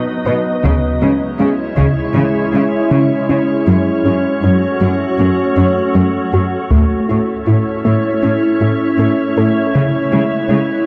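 A brooding, relentless hybrid orchestral and electronic film score cue in C# minor at 79 BPM, cut from a longer piece, where an up-front, nasal organ-like drone holds sustained chords with ensemble chorus while a soft, round pluck traces arpeggios in the background through chorus and tape echo. A lush, bowed cello section carries the bass line with focused vibrato from 0.3 seconds, and a heavy, saturated taiko ensemble strikes in two bursts starting at 0.6 and 6.7 seconds. The chords move from B to C#m, F#m and A before settling on C#m7, all set in a dark production with a scoring-stage reverb of 1.8 seconds.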